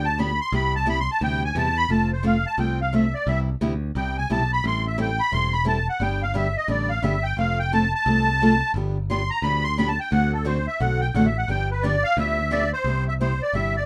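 Lightly reverberant, this short cut from a longer piece of acoustic string swing in the jazz manouche style moves at a lively 175 BPM in 4/4, with a bouncy swung eighth-note feel in C major. A musette accordion carries the melody up front, its reedy, shimmering musette tuning taking a solo from the start until 12.9 seconds across a range from A4 to C6. Beneath it, a picked steel-string acoustic guitar supplies warm accompaniment, while a modern picked electric bass sits up front, bright, growly and punchy in its low register. The harmony cycles through G7, Cmaj7, F, Am7, G and D7 before settling back on Cmaj7 as a new section opens at 12.9 seconds. The mood stays buoyant and swinging throughout the brief passage.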